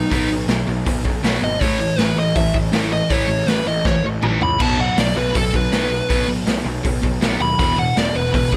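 A high-gain lead guitar takes the spotlight in this upbeat, energetic punk rock excerpt at 160 BPM in 4/4, playing a dark, distorted solo up front between D#4 and B5, with distortion and digital delay on its tone. Beneath it, two picked electric guitars churn out riffs in the background: one crunchy and overdriven with a warm edge, the other sludgy and dark with its own overdrive. A fuzz-laden picked electric bass, bright and growly with a direct, amped character, joins at 0.1 s to anchor the low end. The raw garage drum kit sits up front with a punchy kick, medium-tuned snare, hi-hat, crash and toms, its small, pumping room sound saturated and gritty with a rolled-off top, and a drum fill arrives at 3.9 s. Over a straight feel in B mixolydian, the chords move from B5 to A and back, closing on E5, all captured dry with little reverb in a cut from a longer piece.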